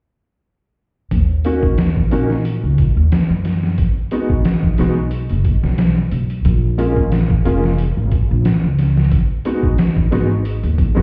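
A pizzicato upright bass, woody and growly, enters at 1.1 s with a gritty, pitched-down sampler-style trip hop kit, its thumpy kick, medium-tuned snare and hi-hat compressed and up front, setting a smoky, brooding groove at 90 BPM in Eb minor with a light 16th-note swing. At 1.4 s a felt-muted upright piano joins with soft, mellow, intimate, vintage accompaniment colored by tremolo and tape echo, moving through Ebm7, B6, Bbm7 and Abm7. The whole excerpt sounds muffled, as if heard through a wall, with stone room reverb surrounding this fragment of a longer piece.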